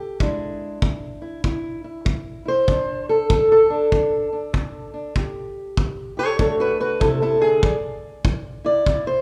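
Bathed in light reverb, this 9.2-second fragment of rollicking, swaggering acoustic country blues swings along on a dark, boxy fingerpicked acoustic archtop guitar carrying the melody up front over changes from E7 through D, A5 and D7 to E5, while a tight, roomy kick drum played with brushes sits in the studio room from 0.2 to 9.0 seconds.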